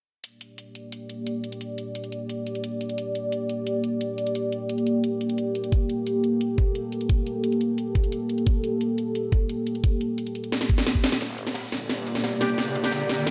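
Mechanical and futuristic, this dark technical drum and bass excerpt in G minor runs at 175 BPM, opening over a G minor chord on an overdriven electronic kit with cracking snare and bright hats, soon joined by a deep, moody analog pad with chorus and sidechain pumping, set up front, and then at 5.7 seconds by a knocking, layered electronic kick. After a drum fill, the build-up at 11.2 seconds brings in a snarling, growling saw bass on G1 and a crunchy, gritty breakbeat kit with dark cymbals and a high-tuned snare, both sitting in the background. In the final moments an ethereal airy pad, a riser and a brief stab from a brass ensemble with light vibrato, low-pass filter and analog delay arrive, all bathed in a dreamy, reverb-soaked hall.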